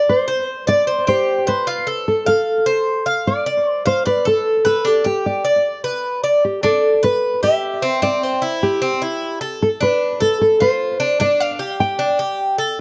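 Dry, close and detailed, this short Latin excerpt at 151 BPM in straight 4/4 has a warm, relaxed mood, moving from Csus2 through F, Dm and G before shifting to G6, C, Dm and G5 for its second half at 6.4 seconds. An up-front Cuban tres, bright and metallic with its doubled, partly octave-paired strings, picks arpeggios. Just ahead of it in level, a thumb-plucked classical nylon-string guitar with fresh strings carries the melody through tape echo.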